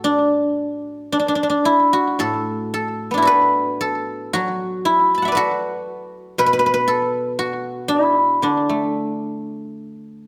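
Rubato and unhurried at around 54-59 BPM in 2/4, this elegant, serene fragment of Chinese traditional solo plucked-string music, cut from a longer piece, features a lone fingerpicked guzheng in D gong mode, up front and closely captured in fine detail, its silvery, ringing tone spanning A2 to B5 with a slapback echo and light reverb, moving from a brief opening phrase into a new section at 2.2 seconds that carries through to 10.3 seconds.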